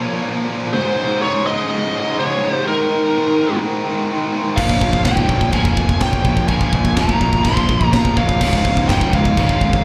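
Aggressive and dark, this heavy metal clip opens with bright, picked riffs from an overdriven, double-tracked guitar and a tight distorted guitar, soon joined by a smooth, dark lead melody with slapback echo and digital delay, shadowed by a high-gain second lead line in the background, until at 4.6 s a growly fuzz bass, another high-gain riff guitar and an up-front metal kit with a high-tuned snare and bright china and crash cymbals crash in, all heard live through a club PA.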